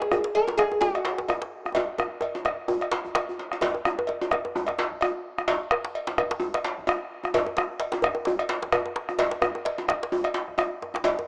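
Powerful and festive, this short cut from a longer piece of West African traditional drum ensemble music moves at 129 BPM in 4/4 with a light swing on the sixteenths, centred on an F# major pentatonic scale. A bright, woody oud opens with a brief plectrum-plucked melody between F#4 and A#4, its fretless double strings sitting up front before it stops at 3.1 seconds. Two djembes drive the ensemble: one medium-tuned and buzzing with metal rattles, carrying a vintage, band-limited colour, the other tight and cracking, heard close and dry. A deep, dark bombo anchors the low end from a small room, while a compressed, saturated cowbell adds a metallic edge from 0.3 seconds onward. A drum fill from 1.8 to 3.6 seconds leads into a second section, and moderate plate reverb surrounds a rough home-demo mix with a small-speaker sound.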